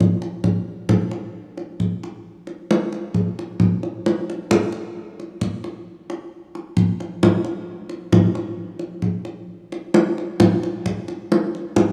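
Gamelan music at a slow 66 BPM in a straight 4/4, serene and shimmering in mood, heard here as an excerpt cut from a longer piece. A kendang carries the percussion through the whole 11.9 seconds, its tight, vintage, band-limited tone sitting up front. The rough home-demo mix places it in a small room while a lush hall reverb with a 2.6-second tail hangs around the drum.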